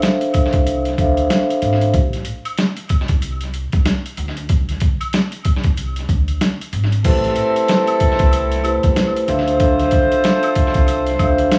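A swung boom-bap groove at 94 BPM in 4/4 drives this moody, tough hip-hop excerpt in A minor, built on a gritty, compressed, pitched-down sampler-style kit with a thumpy kick, medium-tuned snare, hi-hat and crash, sitting up front with tape echo. An egg shaker and woodblock sit in the background, band-limited and vintage, adding a faint acoustic texture with their own tape echo. A soft-mallet vibraphone with its motor off rings out mellow and metallic through a cassette-tape filter at the start, drops away during a break from 1.9 to 7.0 seconds, then returns, while a woody pizzicato upright bass on steel strings enters at 0.5 seconds and holds the low end. From 7.0 seconds a mellow, jazz-style saxophone section adds filtered stabs with tape echo as the harmony moves from Am9 to Dm9. The whole mix is echo-heavy, with light reverb, vinyl crackle and a small-room ambience giving it a dusty, close feel.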